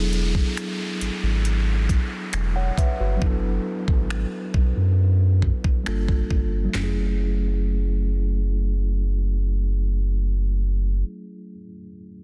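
Contemporary R&B excerpt with a sensual, moody air, where a mellow, clean tine electric piano plays accompaniment over a deep, thick, saturated sub bass sitting up front, an electronic downlifter runs until 6.7 seconds, and a trap drum kit with a knocking kick, sharp snare, metallic hats, finger snaps, handclaps and toms drops out at 7.0 seconds, all in a dry, dense, heavily limited modern master.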